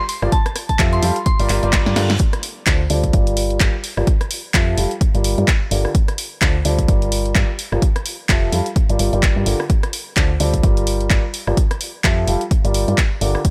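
Piano house with an energetic, bittersweet mood, this short cut from a longer track opens with a soft, pure synth bell carrying the melody for its first 1.6 seconds, its vintage 12-bit sampler grit, chorus and delay lending it a gentle, warbling character. A bright concert grand piano enters almost at once with the central riff, its brilliant, open tone and long sustain shaped by a low-pass filter, delay and sidechain pumping. Beneath it, a round, dark FM bass with a fast attack pumps in step with the sidechain, while an up-front, tape-warm electronic kick anchors the swung groove. A punchy analog drum machine adds handclaps, hi-hat, rim click and snare, with a short room around the snare, clap and hats. A faint reverse cymbal and a drum fill lead into the next section at 2.2 seconds, after which the piano, bass and drums ride a cycling progression of Fmaj9, Gm7 and Dm7 inside a digital ambience.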